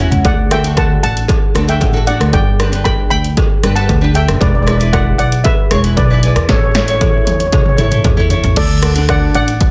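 Sunny and carefree, this calypso excerpt at 115 BPM in D major carries a shimmering, metallic steel pan melody, struck with medium rubber sticks and touched with plate reverb, over a double-tracked, fingerpicked nylon-string guitar with audible finger squeak, a woody pizzicato upright bass, a punchy analog drum machine re-recorded in a large room with fills at the start and from 6.5 seconds, and a distant cowbell in the background that drops out at 8.2 seconds, in a dense, heavily limited modern master as the chords move through D, G, E7 and A before returning to D.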